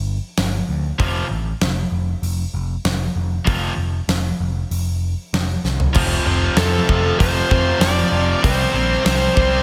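An overdriven, growly picked bass opens this heavy, aggressive hard rock piece, joined almost at once by a huge arena drum kit with a fat snare and punchy kick, then at 1.0 seconds by a pair of bright picked riff guitars, one a cranked stack sound and the other scooped and high-gain, both carrying a slapback echo. After a drum fill, a dark, bluesy lead guitar with distortion enters at 6.6 seconds to carry the melody above the riffs. The mix has a big arena feel, with stage reverb and small room ambience around the up-front bass and drums.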